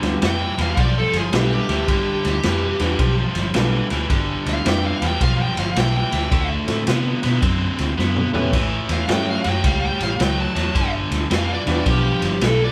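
A roomy, reverb-washed live-band sound frames this gritty, laid-back electric blues shuffle at 108 BPM, where a biting overdriven guitar riff sits up front over a dark, round, foam-muted fingered bass and a vintage drum kit with a punchy kick and dusky cymbals, a clear, woody upright piano accompanies underneath, a smooth overdriven lead guitar sings the melody from 0.2 seconds, and the harmony moves from G7 to D7 before a drum fill at 8.0 seconds leads into A7, then returns to G7 in this brief excerpt.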